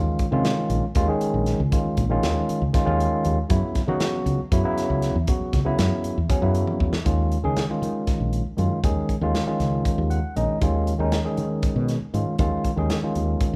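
A barky tine electric piano, lightly overdriven through a combo amp, sits up front in this intense, nocturnal slice of electric jazz fusion, cut from a longer piece and moving in a straight 7/8. It carries the accompaniment across suspended and minor seventh harmonies, and adds a short fill of its own at 9.9 seconds. Beneath it, a dark, round fretless electric bass with a hollow-body, woody character sounds direct and amped, giving each note a punchy weight. A modern acoustic drum kit, mid-forward with a medium-tuned snare and a punchy kick, plays hi-hat, kick, snare and toms, and adds a fill at 6.7 seconds that leads into the second section at 7.1 seconds. The band plays together live in one room, and a moderate large-studio reverb gives the session a spacious, late-night depth.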